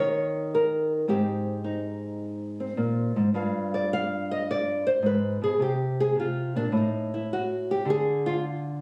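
Solo jazz with a cool, swinging feel at 106 BPM in 4/4, this 8.8-second fragment of a longer piece features a dark, small-sounding fingerpicked nylon-string guitar placed up front, moving through Abmaj7, G7 and Bb13 with light reverb and the intimate character of a phone recording made in the room.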